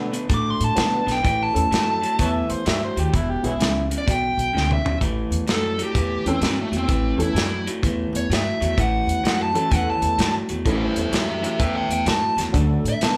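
A dark, smooth, overdriven lead guitar sits up front in this rollicking, soulful electric blues shuffle, taking a solo from 5.0 seconds after a drum fill, while a lo-fi, slightly broken-up guitar plays a riff through a small old amp. A jangly, detuned honky-tonk upright piano and a woody pizzicato upright bass carry the accompaniment over a soul drum kit with a tight kick, medium-tuned snare and rolled-off top, and a gritty amplified harmonica with tongue slaps and scooped notes adds a brief second line between 2.2 and 3.8 seconds. The band plays live together in a large studio with moderate reverb, and the clip is cut from a longer piece.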